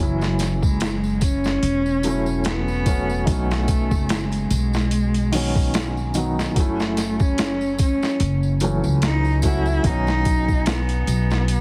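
A dark, bowed cello with vibrato carries the melody through tape echo in this smoky, melancholic trip hop excerpt at 73 BPM in F# dorian, over a soft, muted upright piano with tremolo, a woody pizzicato upright bass, and a gritty, pitched-down, overdriven boom bap sampler-style kit with thumpy kick and high-tuned snare that enters at 0.2 s alongside a tambourine in the background, all moving between F#m7 and Badd9 in a small room with heavily compressed radio sound and vinyl crackle.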